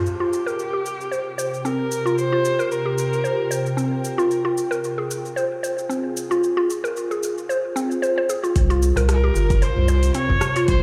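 A woody, warbling mallet-like synth pluck opens this earthy organic downtempo groove at 113 BPM with a gentle 16th-note swing, soon joined by a distant, expressive bowed kamancheh melody with vibrato and digital delay, an afro-pop kit of metallic hats, rim clicks, shaker and toms, and an ethereal, detuned pad holding Csus4 and Fm chords with sidechain pumping. A deep electronic kick and a round, dark analog bass arrive at 8.6 seconds, followed shortly by a very quiet clay-shelled darbuka and then the returning kamancheh, all set in a large, reverberant bare room.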